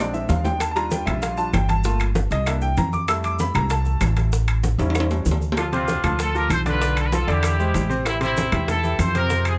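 A bright, brilliant concert grand piano takes the spotlight with a solo over a passionate, driving D minor salsa groove at 193 BPM, backed by a dark, thumpy pizzicato upright bass, ringing low-tuned congas, tight high-tuned bongos, metal-shell timbales, woody claves and grainy maracas, until a punchy, vintage trumpet section with vibrato takes the melody at 5.6 seconds in this close, dry fragment of a longer piece.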